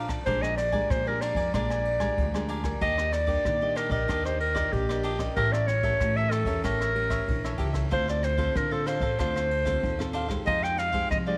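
Samba and choro at 94 BPM in 4/4 with a straight feel and a playful, lively mood, this short excerpt in Bb major is cut from a longer piece. A clear, present clarinet carries the solo melody up front in a classical style, colored by tape echo, entering at 0.3 seconds. Beneath it, a bright, crisp picked cavaquinho and a fingerpicked classical nylon-string guitar supply the accompaniment. A woody, thumpy pizzicato upright bass with steel strings sits a little more prominently in the mix. A jazz kit played with brushes in a small room adds a boomy kick, dark ride cymbal and rim clicks, while the harmony moves through Bb6, Ebmaj7, A7b9, Dm7 and Fm9 within light reverb.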